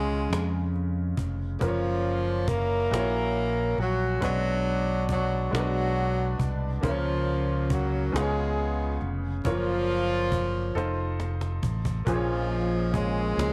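Soulful and uplifting, this slow gospel piece in a straight 6/8 features a breathy, close-miked tenor saxophone carrying the melody up front with soft attacks and scooped notes, while a tight, distant horn section plays its own roomy melodic line. A clear, woody upright piano and a punchy, direct fingered electric bass anchor the harmony, and a cajon with faint snares joins at 0.3 s, playing a fill from 10.8 s. At 12.1 s, a lightly overdriven tonewheel organ with slow rotary speaker and chorus vibrato adds sustained chords in the background, all set in studio reverb, as this fragment of a longer piece closes on a minor seventh chord.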